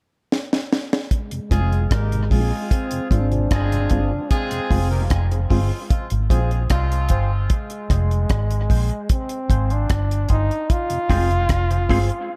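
The punchy, foam-muted electric bass sits up front in this meditative, heavy dub reggae excerpt at 75 BPM in F dorian, joined by a dry, deep drum kit with a high-tuned snare and tight kick that opens with a fill at 0.3 seconds. A bright trombone carries the melody through a low-pass filter and dub echo over a steady F minor chord, backed by a tight horn section with octave doubling until 7.3 seconds, a nasal, wave-folded organ stab in the background, a soft flute-like tonewheel organ with key click, and a very quiet clean semi-hollow guitar. The echo-heavy mix, with light studio reverb and a filter sweep running from 1.1 seconds, gives the groove a spacious, hypnotic weight.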